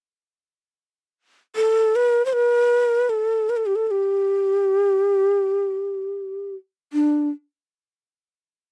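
Soulful and hypnotic, this short Arabic-flavored excerpt unfolds in free time, with a solo bamboo shakuhachi entering at 1.6 seconds and sounding until 7.3 seconds, moving between D4 and C5. Its breathy, hollow tone carries vibrato, tongued notes and a chiff, close-miked and up front. The recording is dry and close, in the manner of a 1970s studio session.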